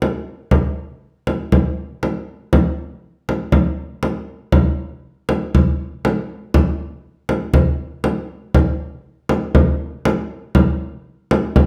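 Arabic percussion in free time, this short excerpt carries a soulful, hypnotic mood across its 11.7 seconds. A frame drum sounds deep and large, its acoustic body captured close and dry with hard hands striking the skin. The drum sits up front in the mix, direct and immediate. Around it, a large studio reverb adds a wet, roomy tail, giving the feel of a band playing live together in one space. Cut from a longer piece, the passage holds the frame drum from start to finish.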